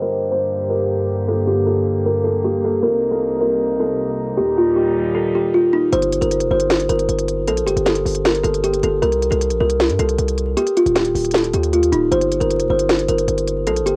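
A woody, hollow-toned kalimba carries the melody across the whole 14-second excerpt, its thumb-plucked notes ringing up front through a low-pass filter in this eerie, menacing trap-flavored hip hop piece in G minor at 155 BPM with a half-time feel. For the opening 5.9 seconds it sits over a pure, floating string section holding soft-attack bowed chords colored by cassette tape, while a filter sweep runs beneath the harmony moving from Gm through Cm7 to Eb. At 5.9 seconds the strings drop out and a hard-hitting 808-style bass arrives with a heavy, punchy sine tone, a noise layer and fast, decaying notes, joined by an electronic trap kit with a sharp snare and crisp hi-hats given a tape-warmed edge. The second half cycles through Gm, C5 and Eb before returning to Gm. The whole recording feels dry and intimate, like a home cassette recording, with vinyl crackle and a dulled low-pass top end adding to its shadowy character.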